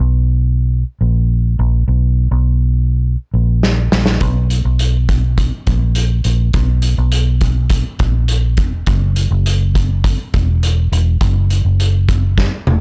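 A vintage muted electric bass opens this excerpt of piano-driven pop alone, its dark, round, foam-muted tone sitting up front in the low register at 103 BPM in a straight 4/4. At 3.6 seconds a loose indie drum kit enters with a fill, its punchy kick, medium-tuned snare, hi-hat and toms captured in a small, pumping room, and another fill closes the passage at 12.4 seconds. The mood is anthemic, and the recording is dry, blown-out and overdriven.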